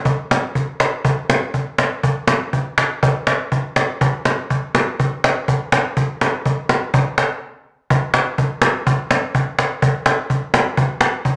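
Klezmer in a straight 2/4 with a festive yet bittersweet mood, carried by a lone cajon that plays from the very start of this short cut from a longer piece. The cajon sounds snappy and up front, its snares buzzing in a live room, set in a moderate, large studio reverb. The pace gradually speeds up throughout, and a brief break at 7.4 seconds leads into a new section at 7.9 seconds.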